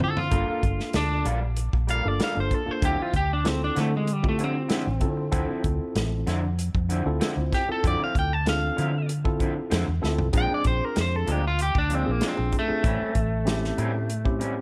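The recording has a studio ambience, with the drums sounding distant and roomy yet still up front. This brooding, soulful straight-eighth soul blues is cut from a longer piece, and a picked, twangy electric guitar at the edge of break-up carries the melody as a solo across the whole clip. Beneath it, a second guitar through a small old amp adds fingered stabs with a slightly broken-up bite, while a worn, slightly out-of-tune tine electric piano, lightly overdriven through its built-in speakers, supplies the accompaniment. The vintage fingered bass is dark, round and punchy, foam-muted and up front, beside a soul kit of hi-hat, kick, snare and toms with a medium-tuned snare, tight kick and rolled-off top. Drum fills open the clip and return at 10.0 seconds, as the harmony moves from Gm9 to Dm9 and then on to Bb7 and A7#9.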